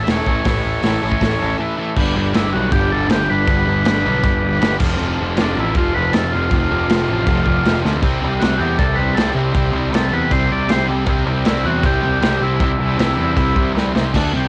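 Garage rock at 158 BPM with a raw, swaggering mood, this home cassette recording drives a double-tracked, bright fuzz guitar riff up front over an overdriven, picked fuzz bass and a dark, up-front drum kit with a punchy kick and a rolled-off top. A clean, buzzy vintage combo organ carries the melody while a second, overdriven combo organ holds sustained chords in the background, all moving through A, G, F, C and D under light reverb. A brief break ends at 2.0 seconds before the main section kicks in, with drum fills at 7.8 seconds and again at 13.8 seconds as this cut from a longer piece closes.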